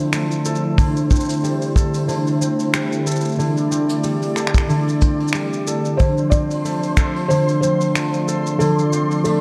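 A ringing, fingerpicked concert harp sits up front in this delicate, autumnal folktronica excerpt, its arpeggios softened by a low-pass filter and trailed by delay. Beneath it, a smooth, detuned analog pad holds sustained chords through a chorus effect, moving from Dm7 to C6/D. A dry, tight acoustic kick drum stands forward in the mix beside a natural-sounding brush kit of finger snaps, hi-hat and shaker, and the groove carries a gentle swing. At 6.0 seconds the harmony returns to Dm7 as a felt-muted upright piano enters with an intimate, boxy, mellow melody, its action noise audible and its notes echoed by delay. Soon after, a flickering, grainy granular texture drifts in high above with its own reverb, all within a dark, warm production touched by light reverb.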